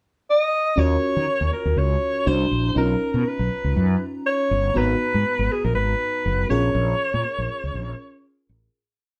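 Recorded as a band playing live in one room with moderate studio reverb, this short, slick and urban piece of polished 1980s jazz-funk pop in Eb minor moves at 120 BPM with a light 16th-note swing. A roomy alto saxophone with vibrato states a motif-based melody from 0.3 seconds. From 0.8 seconds, a lush, dreamy FM electric piano with a soft pad layer, chorus and tremolo holds dark rootless chords, and a punchy, up-front fretless bass plays an agile syncopated line with chromatic approach notes, before a fade-out from 6.8 seconds.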